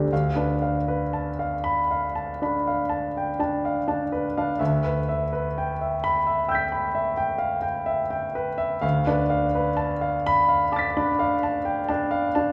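Classical impressionist solo piano in a hazy, nocturnal mood, unfolding slowly and freely in a rubato 9/8 around 39-44 BPM in D dorian, with an intimate, up-front concert grand of deep bass and audible action noise moving from Dm6 through Em7/D and back to Dm6, set within a wet recital-hall reverb heard from further back in the room, in this short excerpt cut from a longer piece.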